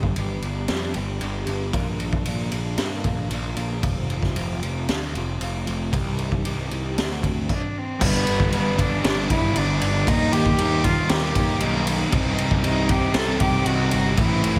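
Raw garage drums sit up front through this restless, anthemic stretch of quiet-loud alternative rock, their high-tuned snare and boomy kick sounding saturated and gritty with a rolled-off top, while crash and ride cymbals mark the straight 4/4 at 115 BPM. From the start, a bright, twangy twelve-string electric guitar plays clean, compressed arpeggios through ensemble chorus, slapback echo and analog delay, over a growly, punchy fuzz bass that is picked and overdriven. The twelve-string drops out at 7.5 seconds for a brief stop, and a single bowed cello takes the melody with a rich, reedy, nasal gut-string tone in period style, its airy bow carried by slapback echo and analog delay. At 8.0 seconds the louder section arrives as three very quiet picked guitar riffs fill in beneath it: one biting and overdriven, one crunchy and double-tracked, and one thick, dark fuzz. The harmony moves from G through Bb, F, Cm and D7 in the opening, then G, Eb and Cm in the heavier half, all in a small room with light reverb, and the piece is cut from a longer work.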